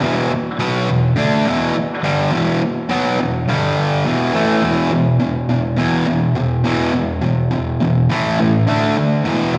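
The sound is a live gig heard through the venue's PA, with a moderate club reverb and the lingering air of a recital hall around it. This short rock passage in E minor moves at 104 BPM in a straight 4/4, and its mood is swaggering and menacing. A lone electric fuzz guitar carries the whole passage as a solo from 0.0 to 9.6 seconds, picked across a range from E2 to D4. Its tone is bright and distorted, double-tracked and compressed, sitting up front with slapback echo and analog delay trailing behind it. The harmony opens on E minor before shifting to power chords on G, E, A and D, with the second part of the passage beginning at 4.6 seconds.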